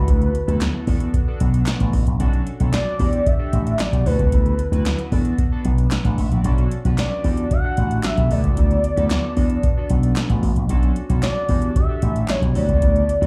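A smooth, warbling portamento lead with chorus and slapback echo opens this feel-good early-eighties boogie funk excerpt, carrying the melody over a glossy, full-bodied chorused polysynth and a bright, punchy slap bass shaped by an envelope filter, all cycling through D69, E9sus4, Bm7 and Em11. An overdriven analog drum machine with a deep kick, metallic hats and a punchy snare joins at 0.1 s, and a close group handclap with slapback echo sits in the background from 0.6 s to 12.4 s. The danceable groove sounds like a live gig heard through the venue's PA, with the bass and drums up front and a touch of club reverb.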